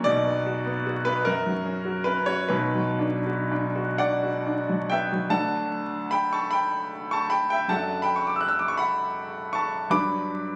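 Romantic classical nocturne for solo piano in 6/8 with free rubato, melancholic and wistful, the clear, intimate concert grand sitting up front with deep bass, long sustain and audible action noise, moving from a minor opening to a brighter major passage at 5.3 seconds, all heard as a short cut from a longer piece through a recital-hall reverb, vinyl crackle and compression on a phone recording made in the room.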